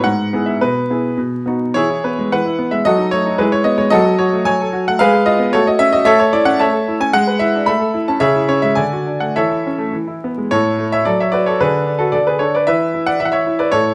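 A clear, present grand piano opens on a bright E major figure, playing solo in a playful, cheerful classical-period sonatina in 2/4 at roughly 102-114 BPM with a flexible, rubato feel. The harmony moves from E major to A major at 6.1 s, and the piano spans from G#2 up to B5 as the short passage reaches a new section at 10.5 s before the cut at 13.9 s. Close, detailed miking keeps the instrument up front, with light reverb and vinyl crackle adding a gentle sense of age.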